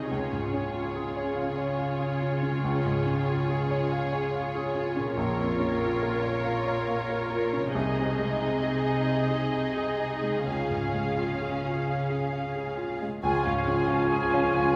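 Muted, veiled violin sections open with a tender melody and a second line over a clear, up-front grand piano with audible action noise, rich violas in the background, a dark cello bass and a very quiet, thumb-plucked, ringing harp playing arpeggios, forming a hopeful, emotional cinematic film score in Db major and 6/8 that moves rubato at about 42-48 BPM through Db, Bbm, Ab/C and back to Db, until at 13.2 s a pure, expressive flute section, a warm, distant oboe and clarinet, mellow French horn chords and lush double basses join, the whole orchestra sitting in a wet concert hall reverb heard from further back before this fragment of a longer piece ends at 14.8 s.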